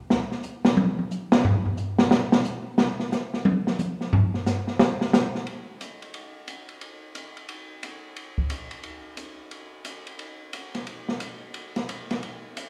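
A brisk swung 4/4 at 178 BPM drives this spiritual, searching jazz passage, cut from a longer piece, played entirely on an open acoustic drum kit of hi-hat, kick, ride, snare and toms that enters at 0.1 seconds and carries a solo through 5.5 seconds. The kit sits up front with a dark, smooth character, shadowy cymbals, a medium-tuned snare and a boomy kick. A generous recital-hall reverb lends the sound the resonant air of a church or concert hall, and a new section follows from 5.5 seconds to the close at 12.7 seconds.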